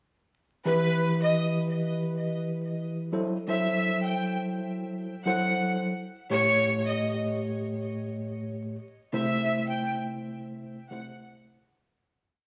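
A rich, intense studio violin section with light vibrato and a smooth top bows a short looping melody through tape echo, upfront over a mellow, clean tine electric piano playing chopped chords through built-in speakers, both repeated like a sampled loop, in a dark, gritty, swung hip hop piece with vinyl crackle, light studio reverb and a raw hardware sound that fades out from 9.1 seconds.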